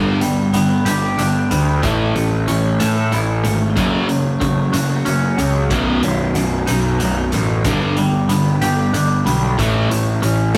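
Twangy, phased guitar arpeggios ring out at once beside a scooped, compressed distorted guitar riff and a growly, fuzz-driven bass that sits up front, with a raw garage drum kit of punchy kick, medium-tuned snare and hi-hat joining at 0.2 seconds. This bittersweet, cathartic cut from a quiet-loud alternative rock piece rolls along slowly in a straight 6/8, moving through G, A, F#m and B before returning to G and A. The drums carry the pumping, gritty character of a stone room with a rolled-off top, and light reverb adds to the rough rehearsal-room sound.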